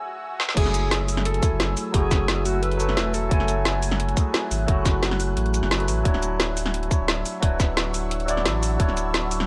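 Dreamy and melancholic, this excerpt of liquid drum and bass in F# minor runs at 175 BPM, opening with a brief break where an electronic swell and a barky, clean tine electric piano with phaser and delay sit over an ethereal pad softened by ensemble chorus and its own reverb, before a drum fill at 0.4 s leads into the drop at 0.6 s. There a tight, layered electronic kick, a kit with a woody snare, metallic hats, shaker and crash, and a round sine sub bass all sit up front, while a breathy, raspy alto saxophone with light vibrato and tape echo carries the melody in the background until 3.7 s. The harmony moves from F#m9 to Dmaj9 at 6.1 s, and the dry mix is high-pass filtered.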